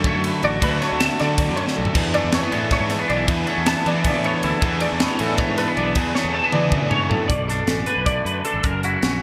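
Playful and intricate, this short math rock and midwest emo excerpt races along at 315 BPM in 7/8, with bright twelve-string arpeggios through ensemble chorus and a twangy, lush-chorused accompaniment guitar sitting over a dark, round fuzz bass and a crisp, up-front fusion kit with a high-tuned snare, punchy kick and gated reverb, while a crunchy, double-tracked overdriven riff drops out at 7.3 seconds as the harmony moves from Dmaj7 and E7sus4 to Bm9 and F#7 in a bright, 1980s-style digital production bathed in plate reverb.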